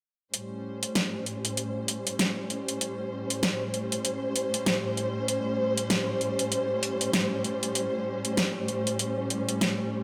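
At 0.3 s, a dark, woody string section enters with a bowed, vibrato-rich A7#9 chord. Alongside it comes an up-front, layered electronic dubstep kit with a huge snare and metallic hi-hats carrying a tape-warm edge. Cut from a longer glitch hop piece, it moves at 97 BPM in 4/4 with a 59% swing on the 16ths, its playful, swaggering mood framed by a lush hall reverb; the drums stop at 9.8 s while the strings hold until 10.0 s.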